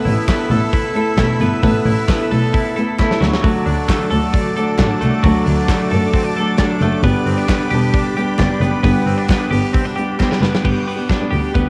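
Nostalgic and bright, this jangly indie pop excerpt moves at 133 BPM in G major, with a fingerpicked steel-string acoustic guitar, its fresh strings squeaking, and twangy, compressed twelve-string electric guitar arpeggios over a woody, bowed double bass and a punchy, up-front rock drum kit with a rolled-off top and cassette-tape colour. A lush, detuned sawtooth pad holds sustained chords in the background until 10.6 seconds, a very quiet, crisp group handclap adds vintage texture, and drum fills land at 3.0 and 10.2 seconds. The harmony moves from Asus2 to D to G, all set in light reverb with the feel of a home cassette recording.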